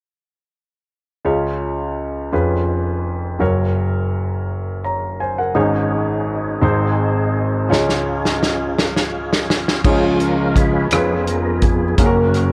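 A clear, intimate grand piano with audible action noise opens this reverent, soulful slow gospel excerpt in 6/8 at 56 BPM in Db major, joined at 5.5 seconds by a percussive tonewheel organ with key click, fast rotary speaker and chorus vibrato holding sustained chords, then at 7.7 seconds by an up-front country drum kit with a punchy kick entering with a fill before the organ takes a solo from 9.8 seconds, all under light reverb and the worn, warbling pitch drift of old cassette tape.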